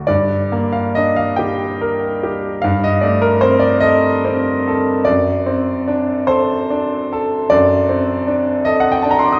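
A brilliant, bright baby grand piano plays alone from the first moment, carrying a wistful, mournful romantic nocturne in a slow 12/8 with free, rubato timing. Its long sustain rings through a wet recital-hall reverb, and though the piano sits up front, the hall itself is heard from further back, with the highs falling away above 7.6 kHz. This brief passage, cut from a longer piece, lasts 9.4 seconds.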